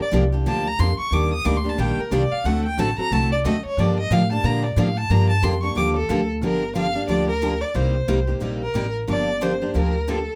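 Swinging and bittersweet, this short cut from a longer piece of acoustic string swing in the gypsy-jazz manner moves at a brisk 181 BPM in G minor, with a light swing on the eighth notes. A single bowed violin carries the melody, its tone rich, smooth and even with vibrato, sitting up front yet with a slightly distant air, and it plays a solo passage from the start until 6.4 seconds. Beneath it, a pizzicato upright bass on gut strings gives a woody, thumpy pulse that sits prominently in the mix. Two picked steel-string dreadnought guitars supply the accompaniment: both bright and full-bodied with fresh strings, one showing audible finger squeak and the other set further back. The chords move from Gm7 through Ebmaj7 and D7b9 to Gm9, then shift into a new section at 6.4 seconds that passes through Cm7 before settling on Gm9, all bathed in light reverb.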